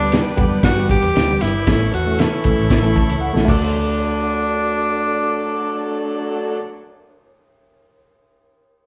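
A breathy tenor saxophone carries the melody up front in this danceable, warm 1960s-style soul excerpt, its scooped notes and vibrato sitting over a soft-edged saxophone section in the background. A worn, slightly out-of-tune reed electric piano plays a fill from 2.7 s, alongside a clear tonewheel organ with key click and slow rotary speaker, while a round, foam-muted fingered bass holds the low end. A muffled, gritty drum kit with a fat snare plays until 3.6 s, finishing with a drum fill, and the band sounds live together in one large, reverberant studio.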